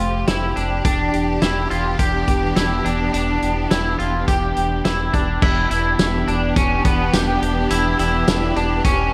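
Dream pop with a hazy, ethereal mood, this short excerpt pairs clear, close bowed strings holding lush sustained chords with a twangy, slightly broken-up electric guitar picking arpeggios through analog chorus and digital delay, a deep sine sub bass, and a loose indie drum kit with a fat snare, punchy kick, dark cymbals and tambourine under gated reverb, entering at 0.3 s, all set in a bright 1980s-style digital production with a lush hall reverb as the harmony moves from F to Em7 and shifts mode at 5.4 s.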